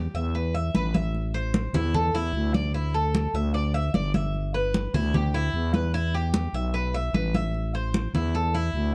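A growling, thick FM bass sits up front with a fast attack and sustained low notes, anchoring this sunny, danceable excerpt of Cuban son and guajira at 150 BPM in a straight 4/4. Over it, a picked Cuban tres spins metallic double-string arpeggios, also up front, while bright, damped congas with a thin skin and hard hands join at 0.2 s. The chords move from E5 through Am, Dsus2, G6 and Em back to Am, all set in a dark, warm production with moderate studio reverb.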